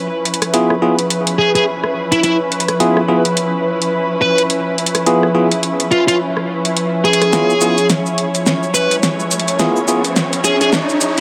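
Muted, con sordino strings open this gritty, funky glitch hop excerpt, holding dark, veiled chords up front with light vibrato and a soft bowed attack, roughened by a vintage 12-bit sampler grit. A pop drum kit joins almost at once with a fat snare, metallic hi-hats, rim clicks and shaker, sounding electronic, layered and produced in studio reverb, while the swung 16ths give the groove a loose bounce. Bell-like tine electric piano stabs ring out bright and clean, trailed by dub echo. At 1.4 seconds a fuzz lead guitar takes the melody, its picked, compressed tone distorted yet still warm, also fed through dub echo. The whole passage works as a build-up, with a drum fill from 7.3 seconds and an electronic riser rising from the background at 8.3 seconds, all set in a light digital ambience.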